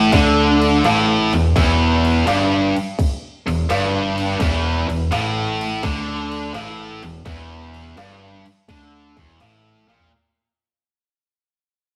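A rough rehearsal-room recording with saturated grit and a wet stone-room reverb carries this smoky blues rock power trio and southern rock excerpt in E minor at 84 BPM with a swung 4/4 feel, where a tight, bright, double-tracked distorted guitar riff sits up front over a growling, overdriven fingered electric bass and an organic electronic drum kit with a tight kick, woody snare, toms and crash, all held on an E minor chord, tuned to A4 = 435 Hz, fading out throughout and closing on a drum fill at 9.8 seconds.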